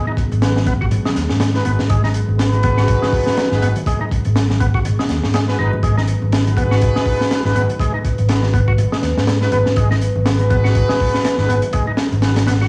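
A crunchy, saturated breakbeat drum kit with a punchy kick and high-tuned snare sits up front in this swaggering, raw breakbeat excerpt, joined by a round, dark fingered electric bass, a gritty overdriven tonewheel organ riff with key click and chorus vibrato, punchy mellow horn stabs, very quiet bongos and congas, and a warbling, nostalgic tape-like pad holding a G#m7 chord in the background, all steeped in a lo-fi cassette home-recording sound and vinyl crackle.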